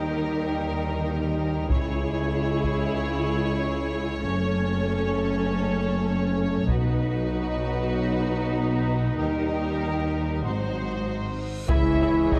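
Heavy-stick taiko drums, close and acoustic, stand out in this relentless, dramatic cue from an epic orchestral film score, playing from 1.7 to 7.9 seconds and returning at 11.7 seconds. Beneath them the full string body plays throughout, with a clear, intense violin section carrying the melody over a second violin line, soft-attack violas in accompaniment, and focused cellos and smooth, even double basses bowing a rich bass. A mellow French horn section holds sustained chords in the background through a steady build-up. From 11.2 seconds a huge, dark reverse cymbal rises into an impact at 11.7 seconds, where a lush string section, a very quiet, roomy trombone section and a clear solo trumpet playing stabs join the drums. The whole sits in a dark, warm production with a moderate scoring stage reverb, and the clip is cut from a longer piece.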